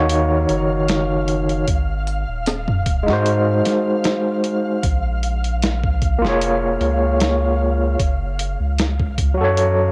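A pitched-down, compressed boom bap sampler-style drum kit with a thumpy kick and medium-tuned snare sets a lightly swung 76 BPM trip hop groove in 4/4, entering at 0.1 s, while a round, deep analog bass with a filter sweep holds the low end beneath it. Up front, a barky, overdriven tine electric piano played through a combo amp carries the chords from Ebm7 through Ab7 and Bbm7 to Gbm, colored by tremolo and tape echo. A faint, flickering granular texture, detuned and grainy, hovers high in its own reverb, and the whole melancholic, cinematic cut sits in a moderate spring reverb with the hazy character of a home cassette recording.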